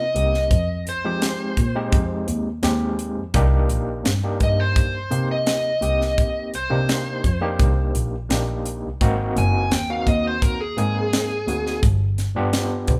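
A dark, smooth electric lead guitar, picked and pushed through overdrive, carries the melody up front between Ab4 and Ab5 in this mournful, smoky soul blues cut from a longer piece. It moves at 85 BPM in a straight 4/4, in C minor, tuned to A4 = 442 Hz, over a progression of Cm7, Fm7, Ab7 and G7. Beneath it, a bright, barky tine electric piano plays a gritty accompaniment through a combo amp, colored by a medium tremolo. A single bowed double bass holds the low end with an even, smooth tone touched by vibrato, while a tight, polished, dry and airy funk drum kit enters at 0.2 s with hi-hat, a tight kick and a high-tuned snare, sitting up front. The band sounds as if it is playing live in one room with light reverb, and the guitar drops out at 11.8 s, leaving the rhythm section to close the passage.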